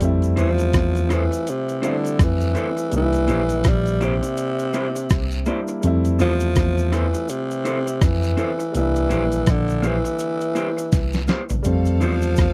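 A swung sixteenth-note groove in 4/4 drives this longing, smooth lovers rock reggae, anchored by a thumpy, up-front detuned 8-bit drum machine with a medium-tuned snare and a fill at 10.9 seconds. Meanwhile a mellow tine electric piano carries the bass line, an intimate grand piano, its action noise audible, sits in the background over Fmaj7 and C7 chords, and cabasa and guiro add faint small-room shake. From 0.4 seconds a raspy, growling tenor saxophone with tape echo sings the melody up front, as a slightly broken-up electric guitar through a small old amp adds picked stabs. At 11.6 seconds a clear, bowed studio violin section slips in with light vibrato, all in a dry, close 1970s-style studio sound.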